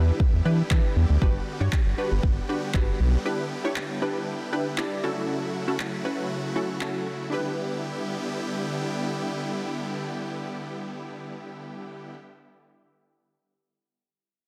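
Dance-pop with a bittersweet yet confident mood, this excerpt opens with bright, detuned supersaw chords and punchy filter-plucked stabs pumping together through Em7, Gmaj7 and F#m7, while a round analog bass with a ring-modulated tone drops out at 3.2 seconds and a tape-tinged deep house kit of kick and handclaps plays until 6.9 seconds, all set in a lush hall reverb under a dense, heavily limited master.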